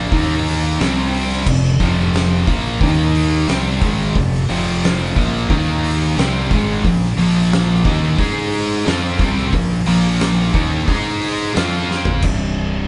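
Stoner and doom metal at 89 BPM in a straight 4/4, this heavy, brooding clip of a longer piece lurches through a power-chord riff that moves from Eb5, C5 and F5 to a lone Abmaj7, then on through Bb5 and Ab5 before settling on C5 near 12.2 seconds. Two thick fuzz guitars sit in the background, one dark and one warm, both picked and distorted, while a tight, bright, double-tracked distorted guitar cuts through alongside them with its own picked riff. Beneath them a growling fingered electric bass, amped and overdriven, reaches down to C1 with a gritty edge. An oversized, low-tuned acoustic drum kit sits up front with a punchy kick, fat snare, dark cymbals, hi-hat and toms, its sound filling a pumping stone room, and a drum fill arrives at 11.9 seconds. The whole band sounds as if playing live together in one space, with light reverb and a rounded, muffled top end.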